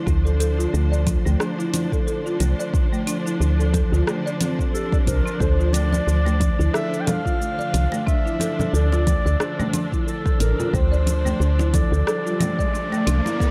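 Organic downtempo in D minor at 90 BPM with a meditative, earthy mood, built on a Dm7 chord where sustained strings pumped by sidechain, delayed marimba arpeggios on hardwood bars, an airy wind-like noise layer, a round FM bass and a deep, up-front electronic kick with an afro-pop kit of cabasa, metallic hi-hat and rim click in a small room set a swung groove, before a mellow classical clarinet enters with delay at 4.7 s, ringing background congas join at 5.7 s, and an electronic riser rises at 11.9 s in this dark production cut from a longer piece.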